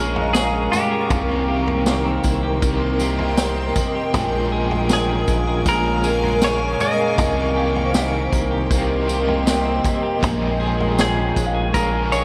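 A granular cloud pad hangs over this hazy, haunting dream pop excerpt, its blurred, slow-blooming chords carrying their own built-in reverb. Beneath it, at 79 BPM in Bb dorian, a semi-hollow electric guitar picks a compressed, hollow-bodied melody through tape echo while a crunchy overdriven guitar adds tremolo-and-chorus accompaniment. A clean electric guitar sits in the background with chorused, echoing arpeggios, and a round analog bass holds a deep, mellow low end. A vintage drum kit with a punchy kick, high-tuned snare, tambourine and toms enters at 0.2 seconds, its top end rolled off, as the harmony rocks between Bbm7 and Cm7. A very quiet, bell-like celesta sparkles briefly at the start and returns at 7.9 seconds, and the whole mix is soaked in a cathedral-sized reverb.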